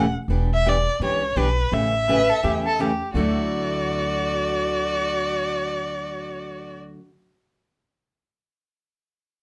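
Swinging at 168 BPM in 4/4 with a lilt on the eighth notes, this short cut from a longer jazz manouche piece in D major feels charming and playful. A rich, focused erhu carries the melody up front, bowed with vibrato and portamento. A bright, full-bodied picked steel-string guitar, also up front, supplies the accompaniment, while an upright bass on gut strings lays down a woody, thumpy pizzicato foundation with a dark low end. At 2.1 seconds a warm violin joins on a second line, bowed smoothly and evenly with vibrato. The harmony moves from Em7 through A7 to Dadd9 at 3.2 seconds, and a moderate small-room reverb gives the ensemble a natural sense of space.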